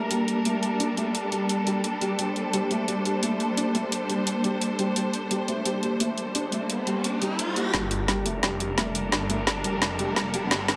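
Mechanical and aggressive, this excerpt of dark technical drum and bass runs at 173 BPM in G minor, opening on a Gmadd9 chord. A lush bowed string section holds sustained chords up front with vibrato and portamento, while a felt-muted upright piano plays soft, intimate arpeggios through a low-pass filter and delay, and a blurred, evolving granular pad drifts in the background. An electronic kit with a woody snare and bright, overdriven hats sits up front, driving the track from 0.1 seconds. A background riser enters at 6.0 seconds, and at 7.7 seconds the build-up begins with a drum fill, filter sweeps on the strings and piano, and a snarling, growling distorted saw bass arriving in the low register. The mix carries a moderate digital room reverb that lends the studio sound a sense of space.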